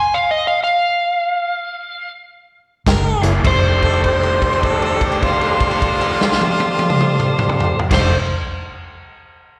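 Swaggering and laid-back, this electric blues shuffle excerpt opens with a dark, overdriven slide guitar alone over a slowing stop until the band drops in at 2.9 s: a distant, scooped-note harmonica, a round, foam-muted bass and a punchy vintage drum kit with a rolled-off top join, soon followed by a lightly overdriven tonewheel organ with key click and slow rotary speaker and a raw, picked garage guitar riff, while a held note rings from 3.4 s, the band heard through a live venue's PA in recital-hall reverb, with slapback echo on the guitars, harmonica and organ.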